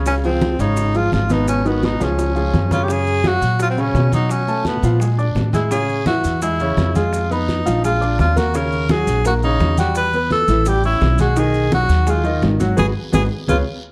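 Afro-Cuban jazz with a sophisticated, sunny mood, cut from a longer piece, where a clear tenor saxophone with vibrato, a soft attack and plate reverb carries the melody up front over a woody, growly pizzicato upright bass and clear baby grand piano accompaniment, while low-tuned congas with thick skins, very quiet soft-handed bongos, a raspy guiro and grainy maracas sit in the background, with a drum fill at 2.0 seconds leading into the second section and a band accent at 12.8 seconds, all in a dark production with light reverb.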